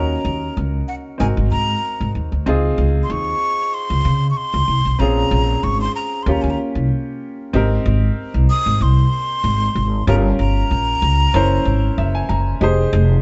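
Breezy and upbeat, this polished 1980s jazz-funk pop piece moves at 95 BPM in 4/4 with a light swing on the sixteenths, set in Ab major. A breathy metal flute carries the melody up front in a high register, its straight tone, soft attack and lifted highs giving the line an expressive, airy quality until it stops at 12.3 seconds. Beneath it, a clear concert grand piano supplies natural-sounding accompaniment with deep bass, and the acoustic upright bass, plucked on steel strings, sits thumpy, woody and prominent in the mix. The chords run through minor, dominant and major sevenths before the second section opens at 7.5 seconds on a lush Abmaj9, following a short break just before it. Later the piano adds a brief fill near the close, and the band sounds as if playing live together in a moderately reverberant stone room, with a soft, rolled-off top end, in this excerpt cut from a longer piece.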